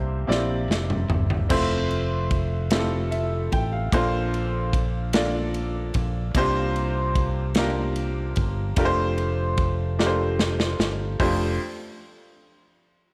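Slow gospel in 6/8 at 50 BPM in F major, jubilant and uplifting, with a clear, woody upright piano comping through Fmaj7, Bbmaj9, C9sus4 and F69 over a round, punchy fingered electric bass and an up-front studio drum kit with bright cymbals and a punchy kick that enters at 0.3 seconds with a fill and closes with another fill at 10.0 seconds, all set in light reverb.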